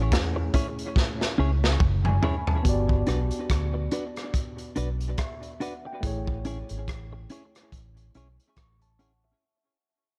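A gritty, saturated breakbeat kit with a tight kick sits up front alongside a dark, round, foam-muted fingered bass in this sweet, tender lovers rock reggae excerpt at 71 BPM in A major, where a worn, slightly out-of-tune tine electric piano with overdrive and dub echo and a clean, compressed electric guitar playing stabs with warbly pitch drift and dub echo move from Amaj7 to Gmaj7 and back, a drum fill arriving at 1.0 seconds before everything fades out from 2.6 seconds.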